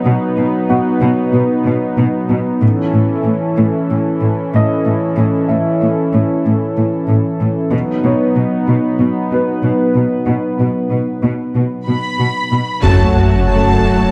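A straight 4/4 pulse at 94 BPM drives this brooding, relentless cinematic film score, a hybrid of orchestral and electronic sound cut from a longer piece. From the start, a smooth, evolving analog pad with chorus holds sustained chords up front. Beneath it, a rich, focused cello section carries the bass, while a clear baby grand piano adds delayed texture in the background as the harmony moves from B to A and back to B during the build-up. At 11.9 seconds two violin sections enter high up: a distant one carries the melody and a close, lush one plays a second line. The impact lands on F#m at 12.8 seconds with a mellow French horn section on sustained chords, an intense viola section in accompaniment, a round, deep analog bass riff, a very quiet bowed double bass section, heavy-stick taiko drums and a huge, bright sub drop. The production is dark and warm, set in a moderate scoring stage reverb.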